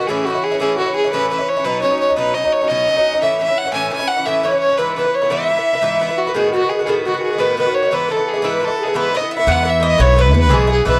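A rich, smooth fiddle with light vibrato carries the melody up front over bright, metallic picked Irish bouzouki in this rollicking Celtic slip jig in E major at 115 BPM in 9/8, with a breathy, woody pan flute adding a soft second line in the background from 3.2 seconds, a picked mandolin joining at 9.0 seconds, and a dark, thumpy pizzicato upright bass arriving at 9.5 seconds, all captured in a dry, close 1970s-style studio sound.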